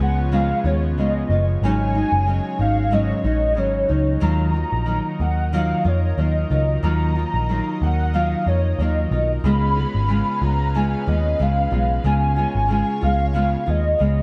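Indie pop with a hazy, wistful mood and a lightly swung feel, this excerpt moves through Db7, Ab7sus4 and Ebmadd9 chords before returning to Db7 at 9.4 seconds. A warbling, detuned synth lead with tape echo and chorus carries the nostalgic melody over a fingerpicked classical nylon-string guitar with subtle chorus and vibrato. A lush, thick unison pad with slow attack and long release sits beneath them, while a round, foam-muted vintage electric bass anchors the low end up front in a dark production with light reverb.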